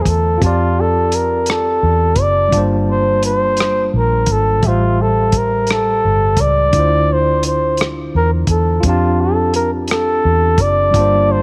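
Slow six-eight R&B at 57 BPM, yearning and sultry, cut from a longer piece and moving through F69, Gm11, Am7 and Dm9 before settling back on F69. A mellow, close-miked flugelhorn carries the jazz-style solo melody up front, with light vibrato, a soft attack and scooped notes. Beneath it sit a clean tine electric piano heard through its built-in speakers, a dark, round, punchy foam-muted fingered bass, and a dry, muffled, lo-fi soul drum kit with a tight kick, rim click, hi-hat and a rolled-off top, placed up front and entering at 0.1 seconds, in a light reverb.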